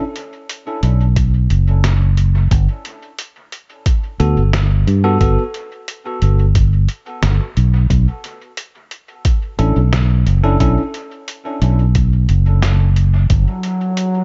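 Meditative and hazy, this ambient dub excerpt moves at 89 BPM in B minor, with a bell-like tine electric piano dropping grainy, dub-echoed stabs over chords drifting from Gmaj9 to Bm11. A round, up-front fingered electric bass anchors the low end, joined by a soft electronic kick from 1.2 seconds, while a muffled, pitched-down lo-fi sampler-style kit, already present from 0.2 seconds, lets its fat snare and hi-hat carry their own dub echo. At 13.3 seconds an airy, breathy pad with chorus and a slow attack surfaces briefly, all within a dark, echo-heavy digital ambience.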